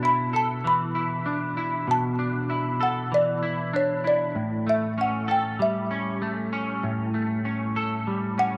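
Haunting and melancholic, this short dream pop excerpt pairs a woody, rustic folk marimba, played with medium mallets and touched by tape echo, carrying the melody, with a bright, clean semi-hollow electric guitar sitting up front with compressed arpeggios thickened by ensemble chorus and tape echo. Both parts play throughout as the harmony moves from Bm7 to A7 at 4.4 seconds. A wet studio reverb and the soft grain of cassette tape wrap the whole recording in a hazy, nostalgic glow.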